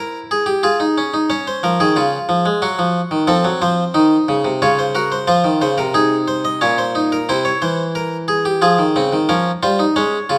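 In a straight 3/4 at 90 BPM, this solemn, serious excerpt of a baroque-style three-part fugue in B-flat minor features a lone Flemish-style harpsichord with one set of strings, its bright, plucked tone heard up front through close, detailed microphones in a moderate recital-hall reverb, moving through minor-key harmonies before a brief shift to a D-flat major chord at 9.3 seconds.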